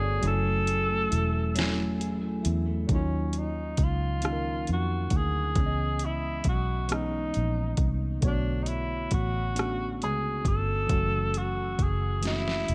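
Yearning and late-night in mood, this slow six-eight R&B excerpt moves at 45 BPM in Eb phrygian, drifting through minor ninth chords. A breathy tenor saxophone carries the melody up front, its vintage, jazz-style tone marked by vibrato and scooped notes and trailed by a dub echo. Alongside it, a worn, slightly out-of-tune tine electric piano accompanies with a light overdrive. An electric guitar at the edge of break-up adds a compressed, picked second line before dropping out at 3.5 seconds. A dark, round, foam-muted fingered bass sits forward in the mix alongside a produced electronic kit of soft kick, deep snare, metallic hats and rim click. The kick stays muted until 2.9 seconds, and a drum fill arrives at 12.2 seconds in a dry, echo-heavy mix.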